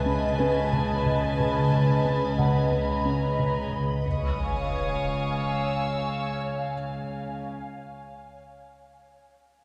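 Heard from deep within a reverberant concert hall, this ominous, tense cinematic fragment at 90 BPM opens on a glassy, ethereal FM pad up front, coloured by ensemble chorus and phaser, over dark sul tasto cello and double bass sections, with a dark, bowed violin section floating high above. A rubbery, hollow square-wave bass riff sits in the background while a felt-muted upright piano adds a very quiet, mellow texture. At 4.1 seconds the harmony moves to C# as a huge, bright sub drop lands, ringing out until 8.2 seconds.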